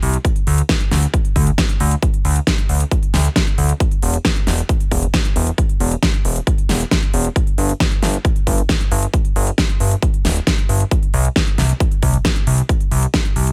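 A fat analog bass anchors this short cut from a longer uplifting trance track, its sawtooth and square-wave tone thick and up front, with a fast attack and sustained notes between D1 and D2. Tube saturation thickens it, sidechain pumping makes it breathe with the beat, and a filter sweep and moving notch keep its colour shifting. The mood is euphoric and emotional, set at 135 BPM in a straight 4/4, with the tuning pitched to A4 = 436 Hz. A punchy, layered electronic kick drives the groove from 0.2 to 13.2 seconds, while a big-room dance kit adds a huge snare and crisp hi-hats, both with a tape-warm, produced sheen and a small room ambience. The overall mix is dry and close, with little reverb, and the bass and drums sit forward.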